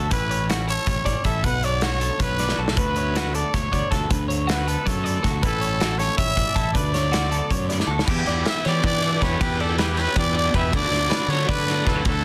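A twangy, clean electric guitar, chiming twelve-string arpeggios soaked in chorus and slapback echo, and a round, fuzzed-out fingered bass open this wistful, playful math rock and midwest emo excerpt in 7/8. A raspy, growling trumpet carries the melody up front with vibrato and scooped notes, while a loose, punchy indie drum kit in a small, pumping room throws in fills at 2.5 and 7.8 seconds. At 8.1 seconds the harmony shifts and a bright, double-tracked garage guitar joins with an overdriven, tremolo-laced riff, all pressed into a dense, heavily limited master.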